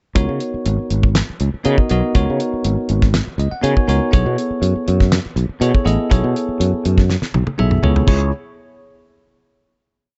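Intense and driving, this short electric jazz fusion piece rides a halftime groove from a dry 70s drum kit with a fat snare and tight kick, under a growly, up-front fretless bass playing a syncopated riff. A bell-like, clean tine electric piano pushes drop-2 voiced suspended chords and adds a fill at 3.1 seconds, the drums take their own fill at 7.1 seconds, and the band lands on a final minor chord at 8.1 seconds. The sound is close, with little reverb and a dark overall production.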